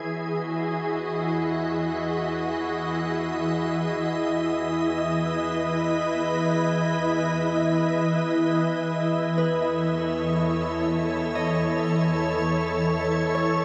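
Floating in free time, this peaceful, serene ambient fragment rests on a pure, bright organ-like pad holding sustained chords that move from Emaj7 to B7/E at 9.0 seconds, with a very quiet, detuned organ-like drone beneath it, a dark, veiled cello section fading in from the background on a low bass note, and a fingerpicked Celtic harp entering at 9.4 seconds with ringing arpeggios carried by delay, the whole mix soaked in a lush hall reverb that gives it a dreamy glow.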